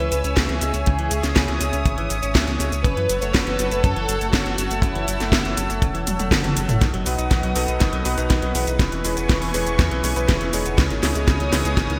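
An electronic house kit with a cracking snare, metallic hats, cabasa and toms under gated reverb opens this sunny, danceable italo disco excerpt at 121 BPM, soon joined by a tight, dry kick sitting up front, while a round, deep analog bass with tube saturation anchors the C#m to F#m7 movement. A dark, intimate violin section plays a bowed sul tasto melody with light vibrato and delay until 5.8 s, over a smooth, warbling analog pad and a twangy clean guitar arpeggiating in the background through lush chorus, low-pass filter and digital delay. After a drum fill at 6.1 s, a clear electric grand piano with clangy bass enters at 7.1 s with filtered, delayed stabs as the chords move through B, E6 and C#madd9, inside a moderate hall reverb and bright 1980s-style digital production.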